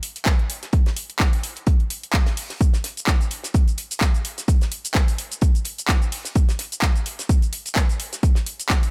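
The recording sits in a small room ambience, with a punchy, overdriven electronic kick drum up front that enters at 0.3 seconds and carries through to the end. This short cut from a longer house piece runs at 128 BPM in 4/4, with a 56% swing on the sixteenths giving the groove an uplifting, euphoric lift. Alongside the kick, a layered house drum kit of handclaps, bright hi-hats and shaker also sits up front, its parts overdriven and bathed in studio reverb. Further back, a damped 70s drum kit adds hi-hat and a fat, dry snare, filtered to thin its low end and placed well in the background. The whole passage is a single section of pure percussion, a produced blend of electronic punch and acoustic texture driving steadily for just under nine seconds.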